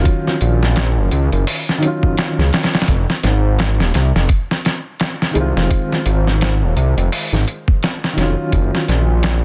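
The recording is dense and heavily limited, a modern master that stays mostly dry, with only the drums set in a small room. This melancholic, dark trip hop fragment, cut from a longer piece, moves in 4/4 with a loose swing on the sixteenths. Up front, a detuned sawtooth bass sounds deep and rumbling, its unison voices beating against each other through tube saturation. A sampler-style drum kit enters at 0.1 s with a thumpy kick, a medium-tuned snare and hi-hat, compressed and gritty with a tape-warm character. Lower in the mix, a mellow, woody upright piano plays accompaniment through tremolo and tape echo, its vintage tone shadowing the harmony as it moves from Ebm9 to Fm7 at 2.9 s and settles on Ebm9/Gb at 8.5 s.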